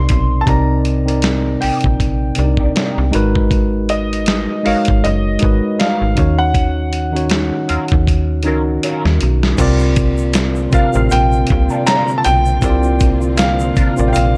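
Smooth and soulful, this swung neo-soul R&B groove sets an intimate grand piano melody, with its audible action noise, over a worn, slightly out-of-tune tine electric piano, a snappy slap-like FM bass and a gritty, compressed sampler-style drum kit whose fill arrives at 8.1 seconds, while a semi-hollow electric guitar adds a second line through wah and chorus, and from 9.6 seconds dark, lush strings and a background egg shaker with finger snaps join as the harmony moves to C9sus4.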